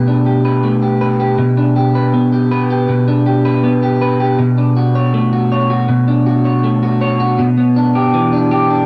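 An up-front electric guitar at the edge of break-up carries this ethereal, hazy dream pop excerpt alone, its picked tone compressed and slightly broken-up, colored by analog chorus and tape echo across a range from B2 to C#5. At a straight 80 BPM in 4/4, it drifts from Gadd9/B through G/B and Bm9 to Em7/B, all resting over a B bass. Digital ambience surrounds it, while the dry, gritty hardware sound carries transformer saturation and cassette-tape grain over the full 8.9 seconds.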